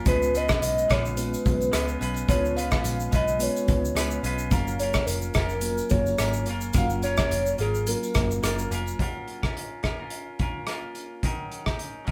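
A small room with moderate reverb frames this laid-back, sunny indie and bedroom pop fragment at 107 BPM in F# major, where a hollow, woody clarinet-like synth lead with chorus and phaser carries the melody over a reedy electric piano with fast tremolo, a clean semi-hollow electric guitar with warbly pitch drift, a round, foam-muted vintage bass, a punchy unplugged drum kit played with bundle sticks up front, and a very quiet jingly tambourine, before the lead, bass, piano and tambourine drop out around 9.0 s and leave the guitar and drums to carry on until 12.1 s.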